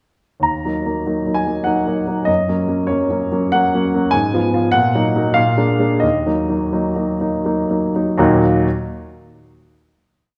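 Bittersweet and passionate, this short romantic character piece for solo piano in Eb minor moves in a flexible, rubato 3/4 at 80-102 BPM, tuned to A4 = 439 Hz. A clear, present grand piano sits up front, carrying a single-line melody over repeated chords through a progression from Ebm to Gb and on through Bb7 back to Ebm. The music slows from 3.2 to 8.2 seconds before settling on a final chord, and the piano stops at 8.7 seconds as the wet recital hall reverb carries the sound to the end of the piece.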